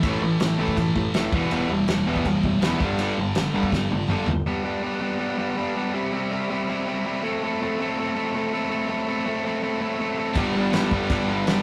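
A fragment of aggressive, urgent punk rock in A minor at 163 BPM opens with a bright, up-front overdriven semi-hollow guitar riff, a double-tracked high-gain distorted guitar, a compressed overdriven electric guitar and a growly overdriven bass in the background, and a loose acoustic drum kit with dark cymbals and a tight kick whose fill at 3.7 seconds gives way at 4.5 seconds to the semi-hollow guitar alone over G, C/G and Am chords, before the full band crashes back in at 10.4 seconds, all captured as a rough rehearsal-room recording with small-room reverb and saturated grit.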